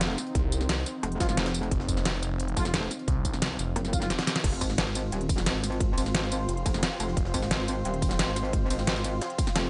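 Dark technical drum and bass with a mechanical, aggressive mood, cut from a longer piece and built on a punchy electronic kick, an up-front dubstep kit with a deep snare and crisp hats, and a very quiet, gritty jungle sampler-style kit with a high-tuned snare recorded in a large room. A metallic wobble bass with chorus and a swirling, phased, detuned saw bass with tube saturation drive the low end, while a deep, moody ambient pad with sidechain pumping holds sustained chords in the background. Distant dark brass stabs appear from 1.2 to 4.1 seconds, a drum fill leads into the second drop at 4.4 seconds, and an ethereal, wave-folded airy pad joins at 5.1 seconds.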